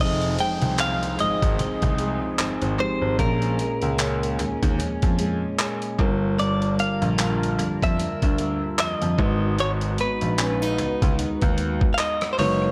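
A lazy, swung sixteenth-note feel in 4/4 drives this late-night contemporary R&B excerpt, carried by a gritty, compressed sampler-style drum kit with a thumpy kick, hi-hat, rim click and handclaps that sits up front with a touch of tape echo. Down low, a clear, worn grand piano takes the bass part, also placed close to the listener, while a mellow tine electric piano and a full-bodied, fingerpicked steel-string acoustic guitar spread arpeggios and accompaniment in the background. A bright, clean electric guitar, recorded direct and compressed, sings the longing melody through tape echo. Beneath it all hovers a very quiet, shimmering pulse-width pad with chorus and a slow attack, holding sustained chords over a moody progression from Fm7 through Bbm7, Gm7 and Abm7. A faint electronic downlifter drifts through the first 6.4 seconds, and the whole mix is soaked in echo with light reverb.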